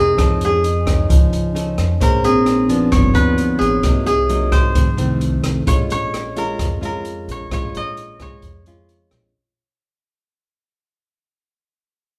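A dry, woody koto played with fingerpicks carries the melody up front in this intimate, wistful bossa nova excerpt, over fingerpicked classical nylon-string guitar, pizzicato upright bass with steel strings, and a dark, smooth open jazz kit of hi-hat, boomy kick and rim click. A metallic, ringing vibraphone with its motor off sits boxy in the background from 0.6 s, while the band plays live in one room bathed in a large studio reverb. The harmony moves from F7alt through Bbm9, G7, Cm7b5 and F7 to Bbm7 at 5.7 s, where the music begins to fade out until 9.3 s.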